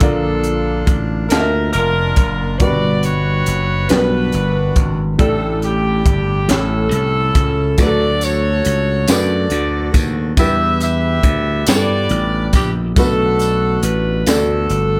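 An edgy saxophone section carries the melody up front, its punchy ensemble sound topped with a smooth edge, in this jubilant, uplifting slow gospel excerpt cut from a longer piece in a straight 6/8. Beneath it, a growly, bright slap bass sits direct and amped, while a dark upright piano adds mellow, woody accompaniment with audible action noise and a slightly detuned, worn intimacy. A crisp fusion drum kit of hi-hat, kick and snare drives the groove with a high-tuned snare, punchy kick and a saturated, gritty character in a pumping small room. A jingly tambourine joins at 7.8 seconds, adding sparkle as the chords move from Bbmaj7 and Gmaj7 through A7sus4 and A7 to Dmaj7, Em7 and Bm7. The whole is framed by a light small-room reverb that keeps the ensemble close and lively.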